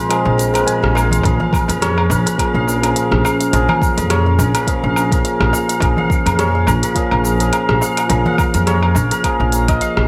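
A bright 1980s-style digital sheen and a moderate plate reverb frame this excerpt of organic downtempo, warm and hypnotic, moving at 105 BPM in 4/4 with a light swing on the sixteenths. A clean, direct tine electric piano carries the accompaniment with subtle chorus, delay and sidechain pumping. Beneath it sits a warbling, nostalgic pad, lo-fi and dark in the background, with chorus and its own reverb. A shimmering, ringing santur plays hammered arpeggios through delay. The opening break gives way at 1.2 seconds as a soft, tape-warm electronic kick arrives and the harmony moves from Fm/Bb to Bbm7. Before then, a very quiet electronic swell passes at 0.7 seconds and a woody, growly pizzicato upright bass enters at 0.3 seconds, joined by a small, crisp metal-shell darbuka played with hard hands at a very low level. An organic electronic kit adds crisp hi-hat, rim click, shaker and woodblock, coloured by gated reverb.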